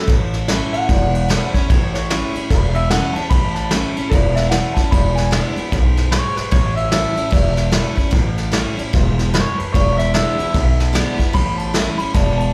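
Heard live through a club PA with only a touch of reverb, this retro, rollicking rockabilly cut swings at 149 BPM in A major, as a twangy, slightly broken-up electric guitar through a small old amp takes a clean solo carrying slapback and tape echo over a bright, full-bodied picked steel-string acoustic with finger squeak and its own slapback, a woody, thumpy pizzicato upright bass and a punchy vintage brush kit with dark cymbals, both up front, all rocking between A and E7.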